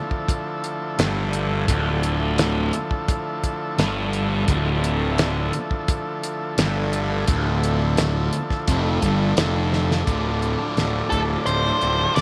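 A straight 4/4 groove from a dry, up-front 70s drum kit with a fat snare and tight kick drives this mysterious, trippy psychedelic rock excerpt, which opens on buzzy, heavily vibrato-laden overdriven combo organ chords before a bright, double-tracked fuzz guitar riff with phaser and a round, punchy overdriven fingered bass join at 1.0 s, a drum fill at 9.7 s ushers in a new section, and a dark octave-fuzz lead guitar with tape echo enters up front at 11.1 s, all set in a moderate echo chamber reverb.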